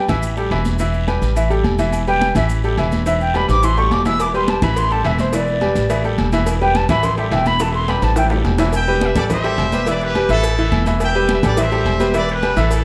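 A driving, straight 4/4 salsa groove at 212 BPM in E minor, cut from a longer piece, carries an airy, distant silver concert flute melody over a bright baby grand piano with audible action noise and a woody, thumpy pizzicato upright bass up front, while congas, ringing agogo bells and timbales, a raspy guiro and grainy maracas sit in the background, tight cowbell and bongos join at 4.2 seconds after a drum fill, and a clear trumpet section with light vibrato takes up the passionate melody at 8.7 seconds.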